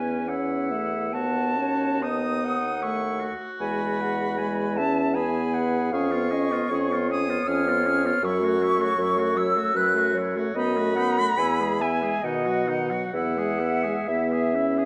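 In a rubato three-four, this serene, slow romantic wind quintet passage sets a pure, tongued silver flute melody with vibrato up front, over a roomy oboe second line, warm clarinet and mellow, smooth-topped French horn accompaniment, and a present bassoon bass with light vibrato, in a moderate scoring-stage reverb.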